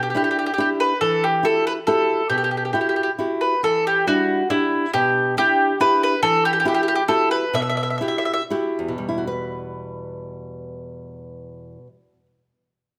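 Italian folk in the manner of a serenade, this short excerpt from a longer piece unfolds in a three-beat metre with a free, rubato feel that sounds passionate and romantic. A mandolin carries the melody up front, its picked double strings giving a woody, warm voice until it falls away at 8.4 seconds. A fingerpicked nylon-string guitar supplies classical accompaniment throughout, sitting close and sounding bright as it moves between minor-seventh and added-ninth colours. The pace slows between 6.2 and 9.0 seconds, after which the guitar continues alone into the final passage. A moderate recital-hall reverb surrounds the pair, lending the duo a sense of space.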